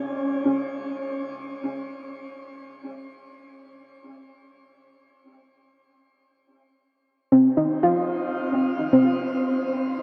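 Serene and peaceful, this ambient fragment in free time, cut from a longer piece, features a lone soft, round pluck with a fast attack and short decay, heard briefly at 0.0 seconds and again from 7.3 to 9.9 seconds in a gentle middle register. Touched with subtle chorus and a diffuse ambient delay, the pluck sits up front in a dark production bathed in a long shimmering reverb as the harmony settles onto Cmadd11 at 6.5 seconds.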